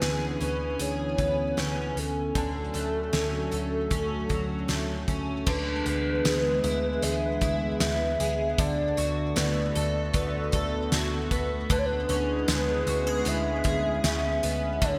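A hollow, woody clarinet-like synth lead carries the melody from the start of this blissful, ethereal dream pop piece at 77 BPM, its chorus, phaser and digital delay floating over an airy, flute-like pad, a shimmering octave-doubled twelve-string acoustic guitar picking arpeggios through analog chorus and delay, and a round, foam-muted vintage electric bass. A loose indie drum kit sits up front with a punchy kick, fat snare, dark cymbals, hi-hat and tambourine in a pumping gated-reverb room, while the chords shift from C#m7/D and F#m/D to E/D and D6 over a steady D. At 5.5 seconds a very quiet marimba with medium mallets adds rosewood texture, all within a lush hall reverb and a bright 1980s-style digital sheen.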